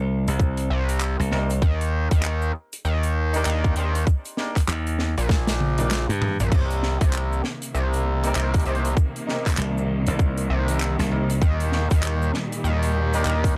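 A dry, gritty hardware sound with vinyl crackle frames this swaggering, funky glitch hop excerpt in C minor at 98 BPM, swung on the sixteenths. An overdriven electronic kick sits up front, joined by a polished studio drum kit of bright cymbals, handclaps and toms, a very quiet grainy cabasa, a punchy tube-saturated slap bass that drops out at 11.4 seconds, and an aggressive sawtooth synth bass with a plucky filter. Dark horn stabs with 12-bit sampler grit, sidechain pumping and analog delay enter at 1.3 seconds, and after a drum fill, a bowed string section with vibrato and portamento joins at 6.5 seconds over chords moving from Ebmaj7 to Cm7.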